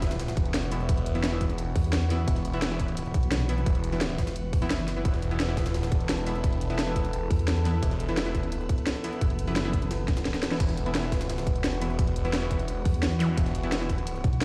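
An impact and zap open this dark, tense excerpt of technical drum and bass at 173 BPM. Over an eerie, metallic FM drone with vintage sampler grit and sidechain pumping, bold orchestra-hit-like synth stabs with delay punch in on an Esus2 harmony, while a swirling, phased detuned saw bass holds a thick, saturated low E. A tight, up-front electronic kick and a cracking snare drive a layered kit with a very quiet, gritty jungle sampler kit beneath, a heavy pulsing wobble bass with chorus enters at 1.8 s, and a drum fill lands at 10.1 s, all in a stone-room ambience heard on a big sound system.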